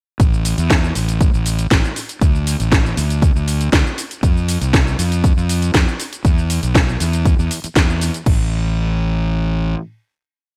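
A punchy, overdriven four-on-the-floor electronic kick and a house drum kit with a cracking snare, bright hats, shaker and crash drive a straight disco backbeat at 119 BPM in this short, groovy, feel-good nu-disco piece, which is one full-energy drop from 0.2 seconds. Up front with them, a fuzzy, overdriven fingered electric bass plays a dotted-rhythm line, and the drums carry studio reverb, with gated reverb added on the kit. The drums stop at 8.4 seconds, leaving the bass to ring into a final note until 9.7 seconds, all in a dry, bright 1980s-style digital sound.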